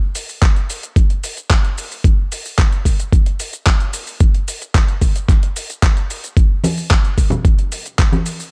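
A dusty soul drum kit opens this short, feel-good nu-disco cut at 111 BPM in a straight 4/4, its handclaps, hi-hat and shaker sounding gritty and overdriven. An electronic kick drum joins almost at once, a thumpy, compressed hit pushed up front with an overdriven bite that anchors the groove. The two sampler-style drum sources share a crunchy, saturated character that gives the rhythm a gritty, groovy pulse. At 6.6 seconds acoustic congas arrive close and dry, their medium-tuned, ringing tones played with soft hands and placed up front. The production is dark and warm overall, wrapped in a digital ambience with the top end rolled off, giving the fragment a warm glow.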